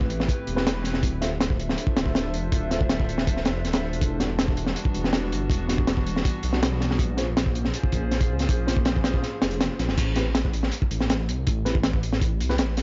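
A dark, raw drum and bass excerpt in A minor at 161 BPM opens on a crunchy, saturated breakbeat kit with a punchy kick and high-tuned snare up front, a deep, rumbling detuned saw bass through tube saturation, and a warbling, nostalgic pad with chorus and phaser holding Am9 through Dm9, Em9 and Bbm9 until 10.0 s, while a worn, slightly out-of-tune tine electric piano adds dub-echoed stabs in the background from 0.6 s, all in a gritty, dry small room with a rolled-off top.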